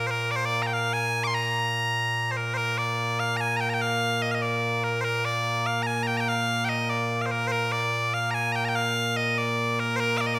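A steady 6/8 pulse carries this ceremonial, stirring Scottish traditional excerpt, where loud, piercing bagpipes play solo and up front for the full 10.4 seconds, their bright, continuous tone filling a reverberant recital hall as the opening phrase returns at 2.6 seconds.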